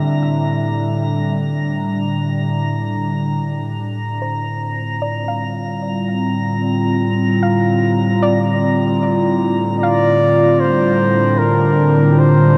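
A warbly, lo-fi tape-like pad holds dark sustained chords up front, with a soft, round pluck arpeggiating quietly behind it, a calm organ-like drone underneath, and a glassy texture of drifting overtones that fades away from 3.4 seconds. This is melancholic, spacious ambient music at 75 BPM in G dorian, moving from Gm69 to Gm11, and a huge, wet reverb gives it a dark production. A flugelhorn enters at 9.8 seconds to carry a solo classical-style melody up front, and the drone returns beneath it as this fragment of a longer piece closes.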